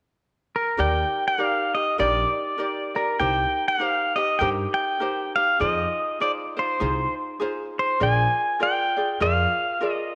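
A wet echo-chamber reverb envelops this dreamy, relaxed Hawaiian piece, cut from a longer work and set in a gently swung 4/4. From 0.6 s a bright, clean electric pedal steel guitar sits up front with the melody, played with fingerpicks and a slide, compressed and shaped with volume swells. At 0.8 s a light, fingerpicked acoustic ukulele and a woody pizzicato upright bass on steel strings, also up front, join over Ebmaj7, Cm7, Fm7 and Bb7, and the bass drops out at 9.4 s.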